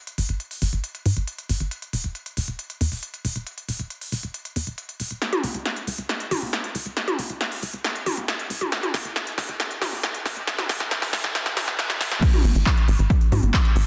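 An overdriven big-room dance kit of crisp hats, a punchy snare, handclaps, toms and crash opens this emotional, driving uplifting trance excerpt, joined at once by a tight, dark sawtooth sequencer bass with sidechain pumping, building through a drum fill from 5.2 seconds until the drop at 12.2 seconds, when a layered, overdriven electronic kick lands up front, all set in a lush hall reverb under a dense, heavily limited modern master.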